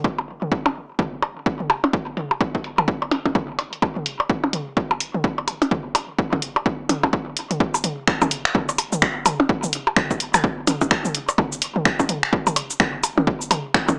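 An overdriven, punchy analog kick drum and tape-echoed electronic percussion blips and toms open this cool, quirky swung techno fragment together, joined from 0.3 seconds by a drum machine whose finger snaps, hi-hat and shaker are darkened by low-pass filtering, all under a filter sweep on the drums until the drop at 7.6 seconds, with light reverb and a small-speaker sound.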